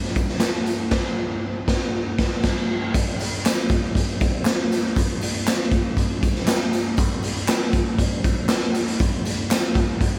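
A gritty, saturated garage drum kit opens this joyful, uplifting soul excerpt up front with a punchy kick, medium-tuned snare, hi-hat and dark, muffled crash cymbals in a straight 4/4, while tambourine and group handclaps sit in the background from 0.2 seconds, a band accent marks 0.9 to 2.9 seconds before the next section, and light reverb gives the lo-fi take the feel of a band playing live in one room.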